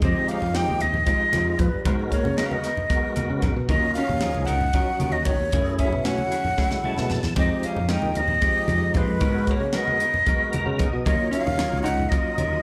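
Heard through a club PA with light room reverb, this intense, driving electric jazz fusion excerpt in F phrygian runs at 228 BPM in a straight 7/8, with a breathy, tongued silver concert flute carrying the melody up front over a dark hollow-body jazz guitar second line, a lightly overdriven tonewheel organ through slow rotary speaker and chorus vibrato, stabs from a compressed clean electric guitar, a growly fretless bass with analog chorus, punchy funk drums with a high-tuned snare, and low-tuned congas in the background, while the drums and organ fill together at 6.6 seconds and the organ fills again at 10.3 seconds over minor-ninth chords moving from Fm9 through Abm9, Ebm9 and Gbm9.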